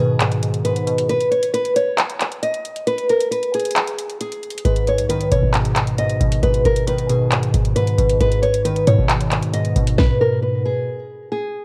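Brooding trap hip hop at 135 BPM in a half-time feel and G# minor, where a small, fingerpicked nylon-string guitar carries the melody over chorused glassy digital keys, a hard-hitting electronic kit with a hard-clipped kick, sharp snare, metallic hats and handclaps, and a punchy, tight 808-style bass that enters at 4.7 seconds and stops at 10.0 seconds, the recording steeped in light reverb and the warbling pitch drift of worn cassette tape.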